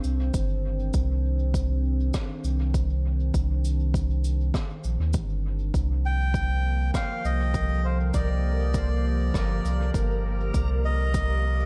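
A straight 4/4 groove of overdriven electronic kick and distant, roomy cabasa and rim click trailing dub echo sits under a round sine sub bass and a warbling, lo-fi tape-like pad with chorus and 12-bit sampler grit, while a reedy, breathy melodica, also echoed, enters at 6.1 s and a reversed, dreamy backwards swelling texture joins at 6.6 s, giving this hazy, deep ambient dub excerpt a dark, nostalgic air as the harmony moves from Cmadd9 to Gm7 at 5.7 s.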